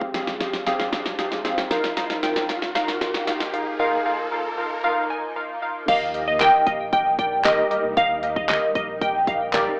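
Dance-pop with an upbeat, summery mood, heard as a short section cut from a longer piece. Up front, detuned digital keys with a filter sweep, chorus and sidechain pumping carry the accompaniment. Beneath them sit a deep, full sub bass and a shimmering, ethereal pad that evolves with a granular texture and its own reverb, both in the background and both pumping too. A punchy, layered electronic drum kit with a fat snare, handclaps, hi-hat and crash opens with a fill while a background riser builds tension through the first stretch. At 5.9 seconds the drop lands, and a crystalline wavetable pluck with a noise layer takes the melody up front, treated with plate reverb and tape echo. The mix has a rough home-demo character, thinned by a high-pass filter into an AM-radio tone and set in a small, reverberant room.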